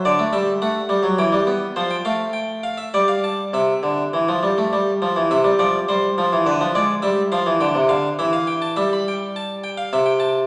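A bright, plucked Flemish-style harpsichord on a single set of strings sits up front and carries this classical, baroque-style two-part invention entirely on its own. The mood is stately and elegant, moving in a straight three-beat metre as the music spans the range from C3 up to B5. The passage is cut from a longer piece. It opens on a Dadd11 chord and shifts at 5.3 seconds into a contrasting section built on C, Bdim7/D and G5 harmonies. It then returns to the opening material at 8.8 seconds before ending on Am/C. A generous recital-hall reverb surrounds the instrument, giving each note a lingering, resonant tail in a spacious room.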